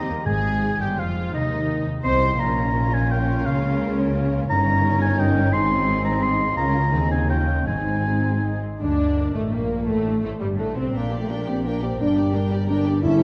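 In a rubato triple metre, this urgent, stormy excerpt from a fast romantic orchestral movement sets a velvety violin melody over a darker violin second line with portamento, distant violas, ringing thumb-plucked harp arpeggios, a lush cello and double bass foundation, and mellow, tight French horn chords, while an up-front solo oboe sings a second line until 8.6 s, the harmony turns to minor at 8.8 s, and very quiet, dry timpani mark the opening and close, all within a reverberant scoring-stage sound.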